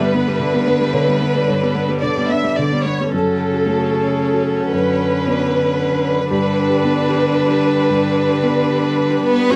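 Melancholic and reflective, this neoclassical excerpt for piano and strings moves in a rubato three-four lilt. An up-front chamber violin section carries the melody with a rich, even, vibrato-laden bowed tone, while a single close, focused cello traces a second line beneath it. A lone viola and a felt-muted upright piano fill in the accompaniment, the viola clear and smooth, the piano soft, dark and intimate, with audible action noise lending it a vintage character. At 3.1 seconds a concert harp joins in the background with ringing, thumb-plucked arpeggios carrying a slapback echo, as the harmony shifts from G through F#m and Bmadd9/F# back to G. The sound is dry and close, like a 1970s studio session in a booth with a moderate amount of room ambience.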